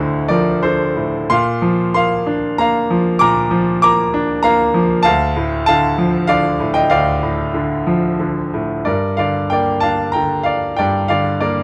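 In a flexible, rubato three-beat lilt with uneven pulses, this moody, bittersweet classical excerpt features a solo grand piano, brilliant and up front with a short, natural sustain, spanning D2 to D6 over harmonies that move from Dm7 through Bb and Dm to Gm7 at 8.9 seconds, all set in a small room's moderate reverb within a dark, warm production.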